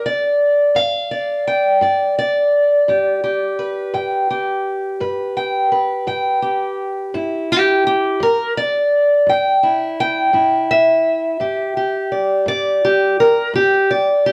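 A slow 12/8 pulse, counted in dotted quarters and played straight, carries this short acoustic country blues excerpt with a swaggering, rollicking mood. A lone fingerpicked steel-string acoustic guitar handles the whole passage from 0.0 to 14.3 seconds, spanning G2 to G5. Its tone is dark and boxy, with the character of a parlour instrument, and it sits up front in the mix. The harmony rests on G before moving to a G5 chord at 7.1 seconds, with the instrument tuned to A4 = 436 Hz. A wet studio reverb gives the guitar a noticeable sense of room around its up-front sound.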